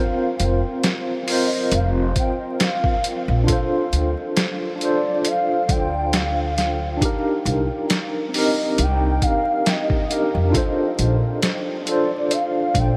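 Trip hop with a melancholic, dark mood, this slow, swung piece opens on a mellow tine electric piano with tremolo and tape echo. An acoustic upright bass played pizzicato, woody and gut-strung, joins at 0.4 seconds alongside a compressed, pitched-down sampler-style drum kit with a thumpy kick, medium-tuned snare and hi-hat, and at 1.3 seconds a pure, breathy sine lead enters high, gliding with portamento and vibrato through ensemble chorus and tape echo. The dreamy mix is soaked in a huge ambient reverb and dusted with vinyl crackle, and the chords move from Fsus4 through Dm7 and Cm7 to Bbmaj7 in this cut from a longer piece.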